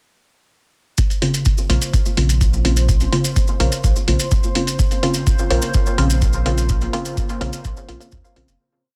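A dense, heavily limited dub techno piece at 126 BPM in Bb minor, hypnotic and nocturnal, where an overdriven four-on-the-floor kick and round sine sub bass drive the groove under muffled, pitched-down hi-hats and grainy hand-played maracas, while detuned sawtooth chord stabs with a filter sweep, chorus and dub echo pump off the beat alongside a sparser phased stab riff, a bubbling resonant texture holds a high C5, and a dark, moody pad enters at 5.6 seconds before the fade-out from 6.1 seconds.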